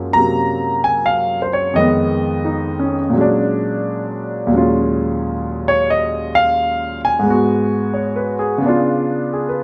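A grand piano carries this short solo jazz passage on its own, its present, up-front tone ringing with long sustain across a span from deep bass to bright upper register. The swung eighths in 4/4 give it a sophisticated yet playful lilt as rich harmonies move from Gbmaj9 through Fm7b5 and Bb7alt to Ebm11, then Abm7 and Db7b9 near the close at 9.6 seconds. A large studio's generous reverb wraps the instrument in a wet, spacious ambience, and the clip is cut from a longer piece.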